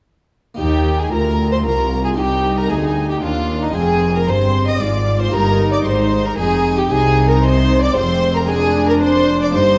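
A straight 3/4 pulse at 114 BPM drives this brilliant, lively baroque-style concerto movement in Eb major, cut from a longer piece, where a focused, vibrato-rich solo violin carries the melody from 0.6 s over a lush, smooth symphonic violin section high in the background, a chamber violin section on a second line, a close symphonic viola section and a chamber cello and double bass section anchoring the bass, all bowed, while a dry, round, close-miked French-style harpsichord accompanies from 0.5 s through chords moving from Eb to Cm and Fm before closing on Ddim/F at 8.5 s, set in a moderate concert hall reverb with a dark, warm production.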